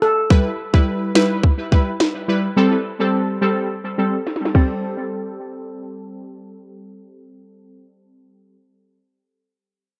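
A straight 4/4 dancehall pulse at 106 BPM in A minor drives this hypnotic, tough cut from a longer piece, where an overdriven electronic kit with a tight kick, sharp snare and crash plays up front from 0.3 to 4.7 seconds, closing with a drum fill, while a brassy, punchy sawtooth synth brass stab with chorus and tape echo carries the accompaniment over Em and Am7 until 8.6 seconds, all set in spring reverb, an echo-heavy, low-pass-filtered mix and a filter sweep.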